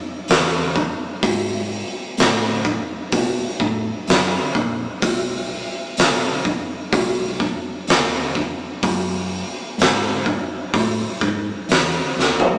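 Captured as a rough rehearsal-room recording with a small-speaker sound and light reverb, this ominous, brooding stoner and doom metal excerpt pairs an oversized, low-tuned acoustic drum kit, saturated and gritty up front in a bright, pumping stone room with a fat snare and punchy kick, against a dark, round, overdriven hollow-body short-scale bass played with the fingers in the background, closing on a drum fill at 12.2 seconds.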